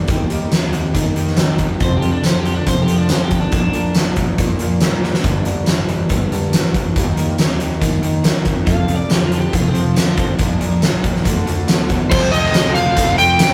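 A rough rehearsal-room recording with tube saturation and light reverb frames this swaggering, brooding classic rock excerpt, cut from a longer piece and moving at 140 BPM in a straight 4/4 over chords such as Eb, F, Bb and Gm. A huge arena drum kit sits up front with a fat snare, punchy kick, crash, hi-hat and tambourine in a big room, and it marks a fill at 5.0 seconds. Beneath it, a fuzz-soaked fingered bass growls in the background, while two very quiet distorted electric guitars, one compressed and one tight, carry bright picked riffs alongside a picked steel-string acoustic with fresh strings. From 1.8 seconds an overdriven semi-hollow guitar adds a second line with a hollow-body tone and spring reverb, returning later. At 12.1 seconds the music shifts as an overdriven slide guitar takes a warm-toned melody up front, joined by a barely audible vintage organ-string pad with a soft, chorused sustain and a very quiet, dark, double-tracked fuzz guitar riff.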